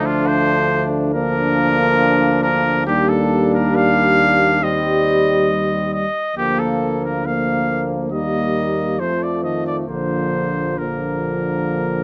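Triumphant and noble, this classical brass quintet excerpt moves at a stately 69 BPM in 4/4 with a straight feel, set in Bb major and cut from a longer piece. A clear trumpet carries the melody up front, ranging from F4 to F5, while a close-miked flugelhorn sits in the background with a second line between A3 and D4. Beneath them, a mellow French horn with light vibrato and a smooth top fills out the accompaniment alongside a warm trombone, which sounds distant and roomy. A bass trombone, also with light vibrato and a distant, roomy character, anchors the low end from Bb1 to F2. All five parts play throughout the 12 seconds in a moderate studio reverb, moving through a progression that opens on Dm and arrives at Eb, F and finally Bb at 9.9 seconds.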